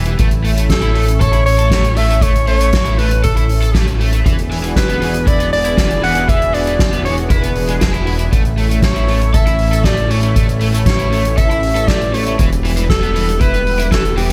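A breathy alto saxophone carries the melody from 0.7 seconds in this uplifting, nostalgic synthwave excerpt, played jazz-style with vibrato, subtone, scooped notes and a tape echo. Beneath it, an up-front, glossy chorused synth bass blending pulse-wave and sawtooth tones with pulse-width modulation anchors a progression of A, E7, A and Em, while a silky, detuned analog string pad holds sustained chords with ensemble chorus and sidechain pumping. An overdriven, picked raw garage guitar riffs through lush chorus and digital delay, and a soft-mallet drum kit with a fat snare, hi-hat and gated reverb is joined by a boomy kick drum sitting in the background of a small room.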